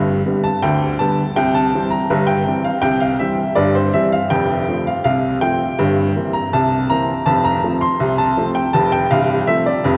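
This is heard through a deep church or concert hall ambience, with cathedral reverb ringing for 5.0 seconds, a layer of vinyl crackle and a dulled top end that lend an aged, dusty character. The piece is lively, jaunty ragtime in F major, moving at 81 BPM in 2/4 with a straight feel, tuned to A4 = 441 Hz, and it is cut from a longer piece. A lone upright piano plays solo throughout, placed up front with a woody, natural tone and long sustain. Its range reaches from C1 in the bass up to C6. The harmony starts on G, shifts to C, lands on F at 4.3 seconds, passes through C7/G and resolves back to F by 7.3 seconds.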